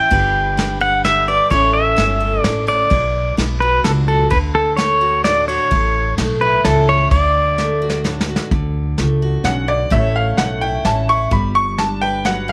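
Honky-tonk and classic country in a nostalgic, heartfelt waltz at 128 BPM in 3/4, set in D major and cut from a longer piece. A twangy, clean pedal steel guitar carries the melody up front, played with fingerpicks and slide and shaped by volume swells, until it stops at 8.0 seconds. Beneath it, a picked dreadnought acoustic guitar with fresh strings gives full-bodied accompaniment, a woody pizzicato upright bass sits up front, and a dark, smooth brush kit with a punchy kick and rolled-off top keeps time on hi-hat, snare and ride. A drum fill leads into a new section at 8.5 seconds, and from 9.4 seconds a brilliant, worn upright piano takes a solo, slightly detuned, with audible action noise and an intimate presence. The chords move from G through A, B minor and D before settling back on A and G, all in a studio ambience with light reverb and some lossy compression artefacts.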